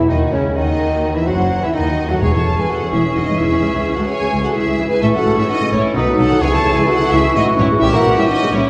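A lively, cheerful classical-period movement in C# minor begins at once with a full orchestral body: a dark cello section and double bass section carry the bass, while the violas (with expressive portamento) and a bassoon provide accompaniment in the background. A mellow French horn section holds sustained chords. Above them, an airy, hollow silver flute and a bright clarinet play second lines, the flute reaching up to D#6. From 0.1 s two lush violin sections join, one singing the vibrato-rich melody and the other playing a soft-attack second line beneath it. Moving at 128 BPM in a quick 3/4, the harmony travels from C#m through C#m/E, A and B7 to a closing A#dim7. A calf-headed timpani sounds E2 between 2.2 and 2.9 s. Heard from further back in a wet recital hall with a 1.5-second reverb, this short cut from a longer piece has a spacious, blended glow.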